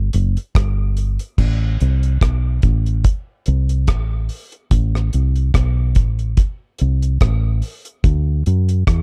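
The sound is close and dry, with little reverb and a dark, warm production that keeps both parts up front. This is a short cut from a longer lovers rock reggae piece at 72 BPM in 4/4, set in A dorian with a gentle 16th-note swing, and its mood is bittersweet and full of longing. A fingered electric bass opens the recording, sounding round, punchy and foam-muted, with a direct, amped tone that sits between F#1 and F#2. A deep acoustic reggae drum kit arrives at 0.1 s, with a tight kick, rim clicks, hi-hat and crash cymbal, all heard dry. The music moves into a new section at 1.4 s and carries on with just bass and drums until the cut ends at 9.0 s.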